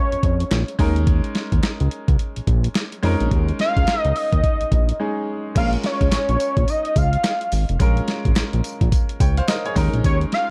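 New jack swing R&B at 107 BPM in Bb minor, punchy and bouncy with a swung sixteenth feel, this dark, dry excerpt sets a fat, detuned sawtooth synth lead with chorus, tape echo, vibrato and portamento over a thick, up-front analog bass, gritty compressed sampler-style drums with a thumpy kick and tambourine, a brilliant grand piano and very quiet crisp group handclaps, moving from Bbm7 to Eb7sus4 with a break at 5.0 seconds before a new section at 5.6 seconds.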